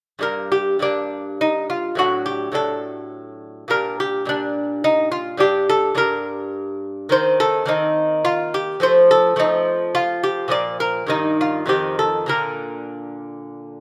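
A solo lute carries this short, flowing passage, its fingerpicked nylon and doubled strings sounding bright and delicate, with some courses ringing in octaves, and it sits up front in a light reverb. The music is a classical, baroque-style dance in triple time, played with a rubato feel that gives it a solemn grace. The lute ranges from its low F2 up to D5 across a minor-key opening that moves through G minor and D harmonies. At 7.1 seconds the harmony turns toward B-flat major, passing through C minor seventh and F seventh chords before settling on B-flat at 12.3 seconds. Cut from a longer piece, the passage runs to 13.8 seconds.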